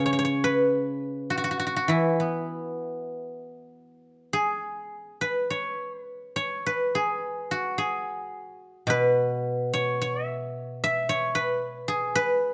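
A solo guzheng, bright and silvery and played with fingerpicks, rings out up front in this serene, pastoral fragment of Chinese traditional music, unfolding in a free rubato around 48-56 BPM across a range from B2 to E5, captured by close, detailed microphones with light reverb, and moving into a second section at 4.3 seconds before the 12.5-second cut.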